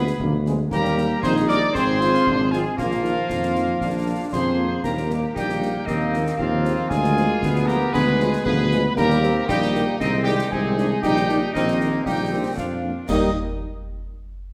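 The mellow tuba stands up front, anchoring this proud, festive military-style march for wind band in Eb major at 116 BPM in a straight 2/4, while a dark, distant trumpet section carries the melody. Around them a bright woodwind section, a hollow piccolo with tongued notes and vibrato, and a soft-edged euphonium in the background weave second lines, as a very quiet French horn section adds accompaniment and a mellow trombone section holds sustained chords. Concert snare, bass drum and dark-toned clash cymbals keep the march going, and a wet scoring-stage reverb surrounds the ensemble in this fragment cut from a longer piece, which resolves to Eb at 13.1 seconds.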